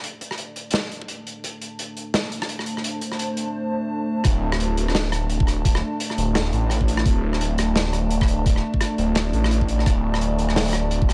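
A thick, swirling phased saw bass drops in at 4.2 seconds to anchor this heavy, dark half-time drum and bass excerpt at 171 BPM, after a build-up in which a deep, moody analog pad carries sustained chords through a filter sweep with chorus and sidechain pumping, while a gritty, saturated breakbeat kit of hi-hat, rim click and snare sits up front from the start beside a knocking, layered electronic kick in a small room.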